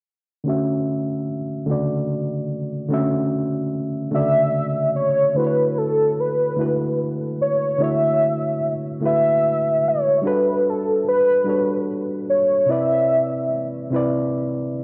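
A slow, straight 6/8 pulse at 49 BPM in dotted quarters carries this tender, sensual R&B excerpt in D major, where a reedy, worn, slightly out-of-tune electric piano, heard up front through its built-in speakers, lays down Dmaj9, Gmaj9 and Cmaj9 chords from 0.4 seconds while a filter sweeps across its tone during the opening passage. At 4.1 seconds a velvety, mellow synth lead enters with a smooth, sustained melody in a high register, its detuned unison voices shimmering with chorus and vibrato. The whole piece sits in a lush hall reverb with the soft haze of a home cassette recording.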